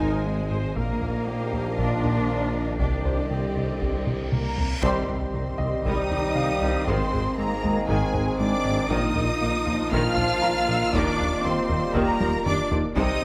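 A relentless, vast cinematic score in C minor at 118 BPM opens with lush, vibrato-rich violins carrying the melody over bowed violas, focused cellos, very quiet double basses, a present trombone section, very quiet mellow horns, a distant tuba, close hard-stick taiko drums, a round ring-modulated analog bass riff, a punchy pitch-drop sub bass and a very quiet tine-like FM synth pluck playing arpeggios, before a bright, worn concert grand piano adds very quiet texture from 2.3 s, an electronic reverse cymbal rises into a band accent and impact at 4.8 s, and a recital hall reverb wraps the ensemble through chords moving from Ab and Bbsus4 to Cmadd9 and Ebadd9.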